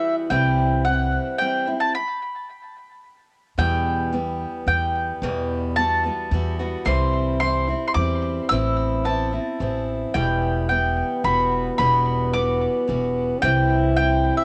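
This home cassette recording has the soft saturation of tape and a light reverb, with most of the instruments sitting close and direct. It is a wistful, yearning folk piece in a three-beat metre, cut from a longer performance. A round, double-string mandolin carries the melody up front, its picked notes trailed by tape echo, while a bright picked steel-string acoustic guitar supplies the accompaniment and a woody, thumpy upright bass with gut strings holds the low end. A mellow, distant French horn in a classical style adds a second line at the very start, and the music comes to a brief stop at 1.9 seconds. The horn returns at 10.1 seconds as the harmony moves through minor added-ninth chords and C major toward the close.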